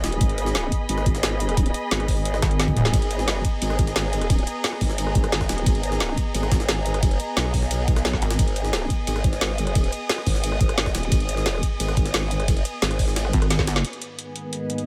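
A straight dark technical drum and bass drop opens this excerpt, with an overdriven, knocking electronic kick and an up-front kit of woody snare, metallic hats, ride, rim clicks and toms, while a gritty, pitched-up jungle sampler kit sits in the background. A saturated, growling bass with formant-filtered wobble and chorus dominates beneath muted, veiled strings that pump against the beat, and a heavy, detuned pluck wobble bass pulses in brief bursts, two of which coincide with drum fills at 2.4 and 13.5 seconds. After a band accent at 13.8 seconds, a deep, moody analog pad enters with a filter sweep running across it, deepening the tense, futuristic mood.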